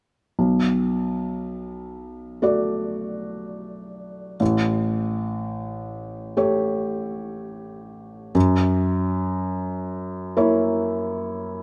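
Reflective and fragile, this short classical excerpt in B minor drifts at a rubato 60 BPM in 4/4, cut from a longer piece. A felt-muted upright piano, soft and intimate, plays accompaniment from 0.4 to 11.6 seconds across a range from A1 to D5, its mellow tone sitting up front with the thin felt and the audible noise of its action close at hand. Light reverb surrounds the piano as the harmony moves from Bm7 to A7 at 4.4 seconds and on to F#7 at 8.4 seconds.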